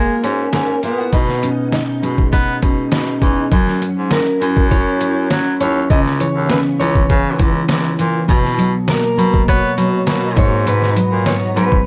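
A straight 4/4 groove at 101 BPM carries this sunny, laid-back indie and bedroom pop excerpt in B major, where muffled, overdriven sampler-style drums with a thumpy kick sit up front beside a full-bodied picked acoustic guitar with ensemble chorus and warbly pitch drift, a clear baritone saxophone with vintage vibrato holds the bass line, a slightly broken-up electric guitar through a small old amp plays the melody with subtle chorus and tape echo, a bright tambourine jingles in the background from 8.3 seconds, and a very quiet, blurred granular cloud pad enters at 9.1 seconds, captured as a dry, gritty hardware recording with light small-room reverb.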